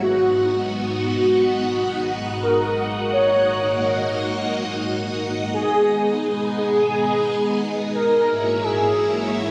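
Nostalgic and nocturnal, this short synthwave excerpt pairs a velvety, detuned synth lead carrying the melody with a lush, vintage string machine holding sustained chords over a steady pedal on G#. The lead's smooth sawtooth-and-triangle tone is dressed in chorus, vibrato, slapback and tape echo, while the up-front string ensemble glows with phaser and ensemble chorus, both parts bathed in shimmer reverb. A long hall reverb gives the whole piece a big arena feel.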